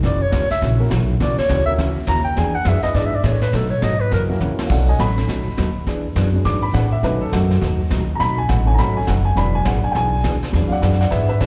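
A breathy clarinet leads this cheerful, down-home western swing, soloing up front with vibrato, subtone and scooped notes over woody, thumpy gut-string upright bass, a clean, dark hollow-body electric guitar and a brushed kit with a tight kick and rolled-off top. A mellow, boxy upright piano joins at 0.8 seconds, and after a drum fill at 4.4 seconds it takes an intimate solo from 4.7 seconds, its long sustain and audible action noise wrapped, like the clarinet and guitar, in plate reverb and slapback echo. The drums carry slapback echo too. Everything sounds like a live gig heard through the venue's PA, with light recital-hall reverb, in a passage cut from a longer piece.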